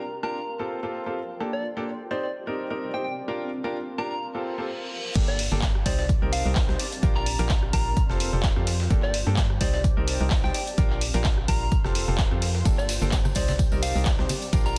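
A soft, warbling synth lead with a round, vintage tone carries the melody over a cloudy granular pad in the background, joined almost at once by a clear, woody upright piano riff with audible action noise, its delay and sidechain pumping giving this bittersweet piano house excerpt a gentle sway. A reverse cymbal at 4.5 seconds leads into the energetic drop at 5.2 seconds, where a hollow, organ-like FM bass, a punchy kick re-recorded in a large room and an analog drum machine with claps, rim clicks, hi-hats, ride and crash arrive, backed by a gritty breakbeat kit of filtered hats and snare. Bright, dry tambourine and congas join at 12.7 seconds over the Gmadd9 and Cm chords. The whole excerpt cycles through a Fadd9, Gmadd9, Cm and Bb6 progression, all within a dense, heavily limited modern master.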